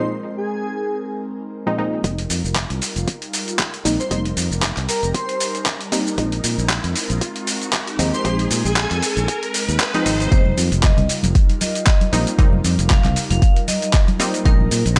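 This smooth, deep house excerpt in F minor at 116 BPM opens on a dreamy sine lead with chorus and delay, muted, detuned dub chord stabs and a breathy, phased pad. At 2.0 seconds an overdriven kick, a gritty sampler-style kit of handclaps, hi-hat and shaker, and a growly fingered electric bass arrive to start a build-up, where a filter sweeps across the stabs and a background riser plays, leading to a drop at 10.3 seconds where a metallic, ringing vibraphone with tape echo and bright, hard-hand congas join.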